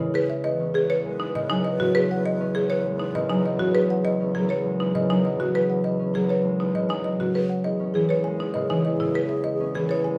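Bright and propulsive, this excerpt of minimalist classical pattern music moves at 100 BPM in 3/4, with a rustic, woody folk marimba carrying the melody while a second, buzzing marimba with medium hard mallets spins up-front arpeggios. A ringing, thumb-plucked concert harp supplies the accompaniment, and a mellow, distant bassoon holds a low E2 bass. An airy, hollow alto flute with vibrato adds a soft background second line from 0.5 to 3.8 seconds and again from 7.7 seconds, as the harmony shifts from G#m7/E to Emaj7 and a moderate studio reverb sets the ensemble further back in a large room.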